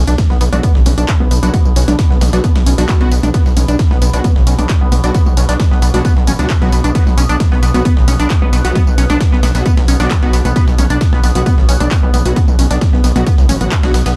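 A gritty, saturated sawtooth synth bass opens this excerpt of driving, relentless peak-time techno, pumping up front against a heavy, layered electronic kick that arrives at 0.2 seconds alongside a barely audible electronic impact. A tight, detuned sequenced synth riff pulses in the middle register, its plucky square and sawtooth tones coloured by chorus, phaser, digital delay and a vintage 12-bit grit. A punchy, tape-toned analog drum machine fills in handclaps, hi-hat, tambourine and toms, while a compressed sampler-style breakbeat kit with filtered ride cymbal and a medium-tuned snare sits in the background. Thick, aggressive rave stabs with decaying unison sawtooths echo through reverb and delay, and from 0.8 seconds a slow-attack drone sweeps its overtones in the background through chorus and phaser. The production is dark and dry, its drums re-recorded in a small room, and the bass, riff, stabs and drone all breathe with sidechain pumping.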